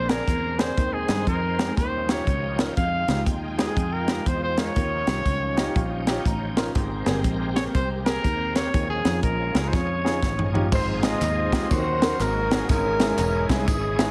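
An uptempo gospel passage at 121 BPM in Ab major opens with a forceful, vintage-toned solo trumpet carrying the melody with light vibrato and scooped notes, bathed in plate reverb. Beneath it, a bright, shouting tonewheel organ holds sustained chords in the background through a fast rotary speaker with light overdrive and chorus vibrato, while a very quiet, woody string section adds lush bowed chords. A round, foam-muted fingered electric bass and a punchy fusion drum kit, with a high-tuned snare and dark cymbals, drive the swung 4/4 feel, and a baby grand piano accompanies throughout, stepping forward with a fill at 5.3 seconds. The trumpet steps away at 10.5 seconds and the strings soon after, as a drum fill leads into a new section where a mellow, pop-style horn section takes over the melody with slapback echo and plate reverb, joined at 10.7 seconds by compressed, saturated tambourine and group handclaps. 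The harmony moves through rich ninth chords such as Eb9 and Abmaj9, and the whole mix has a heavily compressed radio sound in a moderately reverberant large studio, giving this cut from a longer piece a soulful, uplifting lift.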